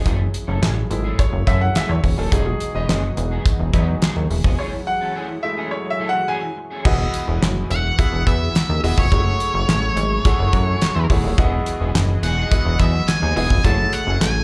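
Feel-good and danceable, this early-eighties boogie funk cut rides a straight 4/4 at 106 BPM in E major, its tight-kicked, fat-snared drum kit with handclaps and a punchy, plucky analog bass sitting up front under a mellow, shimmering pulse-width pad in the background. A clear, polished baby grand piano takes a solo through the opening section, which closes on a break, while a dark, slightly broken-up electric guitar picks a riff with chorus and slapback echo, dropping out at 6.9 s and returning at 11.4 s. A fuzzy octave lead guitar, distorted and carrying slapback and tape echo, enters at 7.7 s over chords swinging between F#m9 and Emaj9, all heard as a live gig through the venue's PA with club reverb.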